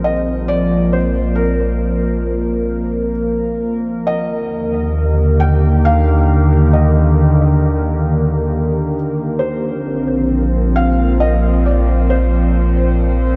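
Ambient music at a slow 67 BPM in 3/4, this short cut from a longer piece in Bb major, tuned to A4 = 435 Hz, feels weightless and warm. A felt-muted upright piano carries the melody between Bb4 and G5, its soft, intimate tone and short sustain touched by subtle chorus and tape echo, sitting further back than the other parts. Beneath it, a warbly tape-like pad holds sustained chords with a slow attack and long release, its nostalgic, lo-fi, detuned character shaped by chorus, phaser and its own reverb. Down low, a deep rumbling drone adds an ominous, dark bass between Bb1 and Eb2, sitting up front alongside the pad. The harmony moves from Bbsus2 to Ebmaj7 at 4.1 seconds and back to Bbsus2 at 9.4 seconds, all three parts playing throughout. A huge ambient reverb with an 8.1-second decay soaks the whole mix in a dreamy haze.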